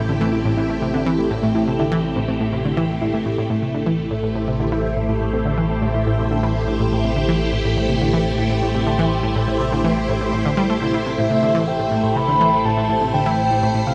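A straight 4/4 pulse carries this cosmic, expansive piece of sequencer-driven space music, cut from a longer work, its forward motion set by a bright, detuned analog pluck riff treated with chorus and tape echo. Up front, a lush vintage string machine holds sustained chords throughout, colored by phaser and ensemble chorus. Beneath it, a warbling, evolving analog drone sits low as the bass, slow to bloom and long to fade. A soft, dark, rounded pluck traces gentle arpeggios in the background at the start, dropping out at 3.2 seconds. At 11.2 seconds a mellow, octave-layered synth lead enters high with a vibrato-touched melody, the most prominent voice in the mix, all of it bathed in a huge, wet ambient reverb with a long tail.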